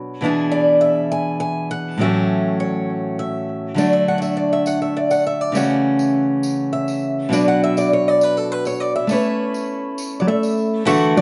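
Peaceful and warm, this short folk piece in a steady, straight 3/4 opens with a full-bodied steel-string acoustic guitar, its fresh strings picked with a bright sheen, and a boxy archtop guitar carrying the picked melody from 0.5 seconds, both placed up front over a chord movement from E7/B through D and Bm to Aadd9. A jingly tambourine in a small-room sound joins at 3.8 seconds, and at 10.2 seconds a dark, clean, compressed hollow-body electric guitar adds a fingered second line just before the cut. Moderate studio reverb gives the whole a gentle, rounded space.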